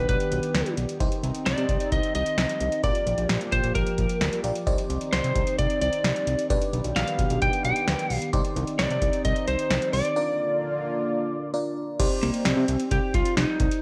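A dark, slightly broken-up lead guitar carries the melody up front with a slapback echo, giving this melancholic, cool synth-pop excerpt its edge. Beneath it, a glassy, bell-like FM electric piano shimmers through chorus and phaser, a smooth analog pad holds sustained chords until 12.0 s, and a fat, saturated analog bass with filter sweeps anchors the low end. An electro analog drum machine sits up front with a deep kick, punchy snare and metallic hats, and a break arrives at 10.2 s before the music moves into a new section, all set in a moderate recital hall reverb.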